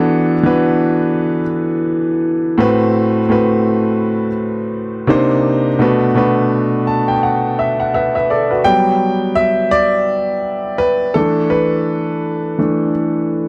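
A boxy, intimate small-room sound puts a solo grand piano up front, with its long sustain and audible action noise clear in the moderate ambience. This sensual, moody R&B excerpt moves at 84 BPM in 4/4 with a light 16th-note swing, tuned to A4 = 441 Hz. The piano spans A2 to A5 over chords such as E9sus4, Am69, Cm7 and Bm7, then plays a fill at 6.5 seconds that leads into a solo passage from 8.7 seconds over Gmaj7 and E7sus4, running until the cut at 13.5 seconds.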